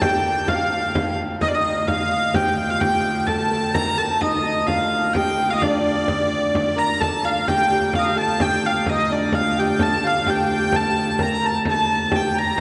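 A three-beat pulse with a straight feel carries this medieval dance, cut from a longer piece, and its mood is ancient and mysterious. A nasal, earthy hurdy-gurdy leads the melody up front, its wheel-bowed, keyed sound close and airy at the bow. Beneath it a fingerpicked Celtic harp rings out a second line. A hollow, mellow tenor recorder with a straight tone and a touch of chiff sits in the background on another second line. A woody viola da gamba holds a low drone with light vibrato, while a frame drum struck with hard hands adds percussion in a live room. All five play throughout, with the music moving into a new section at 7.0 s, and a long, wet cathedral reverb from a church or concert hall gives the whole recording a dark top end.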